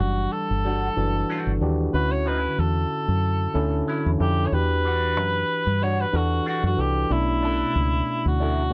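A mellow cor anglais carries the melody from the start with light vibrato and a distant, roomy classical tone, over a barky, overdriven tine electric piano and a round, foam-muted fingered bass that sits up front, in a sultry, introspective neo-soul R&B groove at 93 BPM in E dorian with a lightly swung 16th feel. From 0.6 seconds, a twangy, slightly broken-up electric guitar through a small old amp adds a picked second line coloured by wah. The chords move from Em9 to Dmaj9, back to Em9 and on to Bm11 in this short cut from a longer piece, wrapped in light reverb and a dark production.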